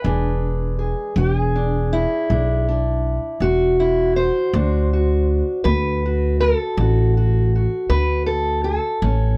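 Acoustic country blues with a soulful, gritty mood, this short excerpt moves at a slow 54 BPM in a 12/8 metre with a straight feel. A fingerpicked steel-string acoustic guitar carries the melody, its dark, boxy parlour tone sitting up front and ranging from E2 to C5. An upright bass, plucked pizzicato on steel strings, supplies the bass line from E1 to D2 with a woody, warm character, also placed up front. Both parts play throughout the full 9.4 seconds, as the harmony moves from E7 to D7 at 4.5 seconds. Light reverb and a dark, warm production frame the pair.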